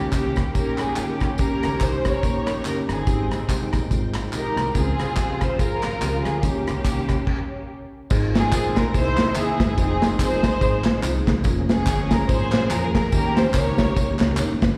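Heard through a live venue's PA with recital-hall reverb and a small-room ambience, this jubilant, soulful uptempo gospel cut swings at 143 BPM in 4/4 as a lush, dark bowed string section carries the melody with slapback echo over a bell-like tine electric piano with ensemble chorus, a very quiet, lightly overdriven tonewheel organ holding sustained chords through a slow rotary speaker, a woody, thumpy pizzicato upright bass, a tight, up-front acoustic drum kit with a rolled-off top, and group handclaps with tambourine, all moving through rich seventh-chord changes and halting for a brief stop from 7.3 to 8.1 seconds before a new section begins.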